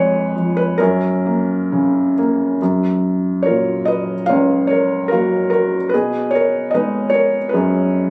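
A felt-muted upright piano plays alone in this short classical excerpt, its soft, mellow tone sitting up front with an intimate, slightly vintage character. The tender, peaceful performance moves with a rubato feel, settling from its opening chords into a new passage at 2.6 seconds built on gentle major-seventh and sixth harmonies. Light reverb and a phone recording in the room give it a homely, compressed sound.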